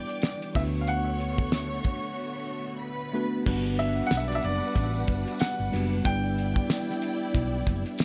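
A clear, natural grand piano carries the melody through this short cut from a lush 1970s-style soul piece, its line sitting between D5 and G5 and trailed by tape echo until it stops at 7.3 seconds. The groove moves at 93 BPM in 4/4 with a 58% swing on the sixteenths, smooth and silky in mood, over chords of Em7 and D6 before shifting to Gmaj7 at 3.5 seconds and Em7/G later. A worn, slightly out-of-tune tine electric piano supplies accompaniment, while a woody, bowed studio string section with vibrato plays a second line and a vintage sawtooth string machine with sub octave, phaser and ensemble chorus holds soft-attack chords in the background. Up front, a cloth-damped acoustic drum kit brings a fat snare, tight kick and dark cymbals, joined by a jingly, compressed tambourine tucked behind, and a round, punchy hollow-body bass enters at 0.6 seconds in the low register. A break falls between 2.2 and 3.5 seconds, and the whole mix sits in light reverb with small room ambience.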